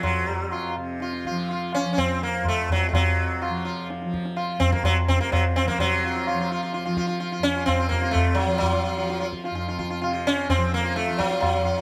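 In a straight 3/4 pulse at 127 BPM that gradually speeds up, this meditative, serene Hindustani classical excerpt features an up-front sitar, plectrum-plucked with buzzing sympathetic strings, carrying the melody between Gb3 and F4 over a softly plucked, shimmering tanpura drone and high-tuned, ringing tabla, all captured with close, detailed microphones and light reverb, shifting into a new section at 5.8 seconds.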